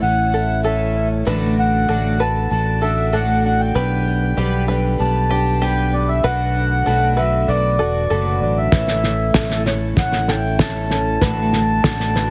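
Nostalgic and anthemic, this indie folk excerpt builds its arrangement around a mellow, reedy accordion melody, set over a bright fingerpicked steel-string guitar with audible finger squeak, a shimmering octave-doubled twelve-string, and plunky open-back banjo arpeggios touched with analog delay. A punchy fingered electric bass sits up front. At 8.7 seconds a cloth-damped, thuddy drum kit with a fat snare and tight kick joins in, sounding muffled and gritty, all framed in small-room ambience and a heavily compressed, radio-like sound.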